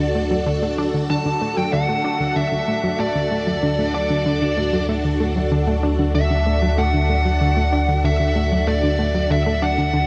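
A straight 4/4 pulse at 95 BPM drives this cosmic, luminous piece of ambient, sequencer-driven space music, cut from a longer work and resting on D. A round analog bass holds a deep D2 beneath a detuned sawtooth pluck riff, opened by a filter sweep through the first 1.7 seconds and carried on chorus and tape echo, while a lush vintage string machine sustains bright chords through phaser and ensemble chorus. Up front, a fuzz-distorted electric lead guitar sings the melody through shimmer reverb and tape echo, all set in a huge, wet ambient space with a cassette-tape character.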